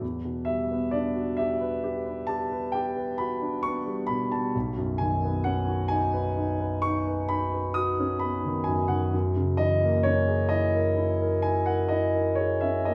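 A concert grand piano opens this dreamy, hazy impressionist solo, sitting up front with deep bass, an open tone and long sustain as it ranges from B1 to D#6. At 66 BPM in a rubato 5/4, the harmony drifts from Em9 to B69 at 4.5 seconds and on to F#13 at 9.1 seconds. A wet recital hall reverb surrounds the piano through this 12.9-second passage cut from a longer classical piece.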